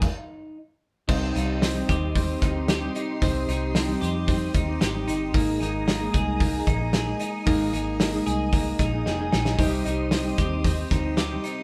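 A brief stop opens this wistful, bittersweet excerpt of jangly indie pop in C minor at 113 BPM, with a picked, full-bodied acoustic guitar and soft, round electric-piano-like synth keys with chorus tucked in the background, bright, twangy twelve-string electric guitar arpeggios, and a loose, gritty drum kit up front with dark cymbals and a tight kick. At 1.1 seconds a dark, foam-muted fingered bass and a vintage, organ-like string ensemble with ensemble chorus join over Cm and Absus2 chords. A synth keys fill and a drum fill lead back to Cm at 9.6 seconds, all captured as a band playing live in one room with moderate studio reverb.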